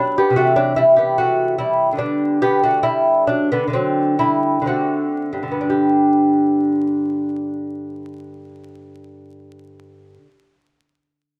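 A solo lute opens the recording, fingerpicked and delicate, sitting up front with the soft shimmer of its double strings and some octave-doubled courses. This short excerpt of a baroque-style dance in classical vein unfolds in a serene, flowing mood, its four-beat pulse handled with a free, rubato feel. Over the first 5.7 seconds the playing gradually slows as the harmony moves from Am/C through G/D to D7 before settling on G at 5.7 seconds, where a new phrase begins. The nylon strings span from G2 up to G4, giving the line a rounded, intimate body. A moderate studio reverb and a dark production frame the instrument, with faint vinyl crackle adding an aged texture beneath the music.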